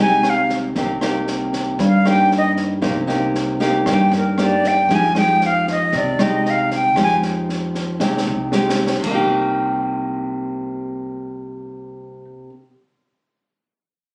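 A straight 4/4 bossa nova groove carries this wistful, intimate fragment of a longer piece. A breathy, reedy concert flute sits up front with a soft attack and vibrato, carrying the melody until 7.2 seconds. Beside it, a fingerpicked classical nylon-string guitar with fresh strings sounds close and mellow as it moves between Fm9 and Cm7 harmonies. Further back, a woody, thumpy pizzicato upright bass on gut strings anchors the low end, while an acoustic jazz kit with dark cymbals, a high-tuned snare, a boomy kick and rim clicks plays a fill at 8.0 seconds before it drops out at 9.2 seconds. The guitar and bass carry on into the closing passage. The whole recording has a casual, in-the-room quality, as if captured on a phone in a club, with a moderate, roomy reverb around it.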